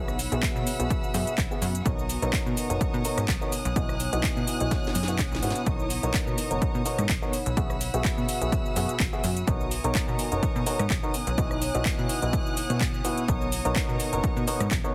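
Sustained chords from a softly bowed chamber violin section, a clear grand piano riff with audible action noise, low-pass filtering and digital delay, a plucky, detuned analog bass and a cloudy granular pad with built-in reverb all pump to the sidechain from the start of this uplifting, joyful piano house cut in B major at 126 BPM, joined at 0.1 s by an overdriven house kit of cracking snare, metallic hats, handclaps, cabasa and rim clicks, which plays a fill at 4.7 s, and at 0.4 s by a punchy, distorted electronic kick, in a dry, heavily compressed mix with a radio-like sound.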